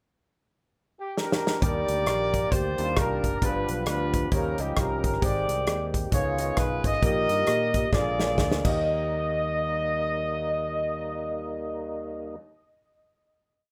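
Uptempo gospel with a soulful, reverent mood and a swung feel, this short complete piece opens on a pickup bar where the horn section states its hook phrases alone from 1.0 s, before a drum fill leads the full band in at 1.6 s. The horns sit up front with a warm, roomy ensemble tone and light vibrato, carrying a motif-based pop-style melody. An airy acoustic drum kit with a punchy kick and medium-tuned snare drives a two-beat praise groove through the breakdown, adding a second fill before dropping out at 8.7 s. Underneath, a round fingered electric bass walks and runs with slides, while a brilliant grand piano pushes drop-2 chords with grace notes in the background, and a fat, lightly overdriven tonewheel organ holds percussive chords through a slow rotary speaker with chorus vibrato and key click. The band lands on a final hit that rings out to the end, all in a rough home-demo mix with moderate studio reverb.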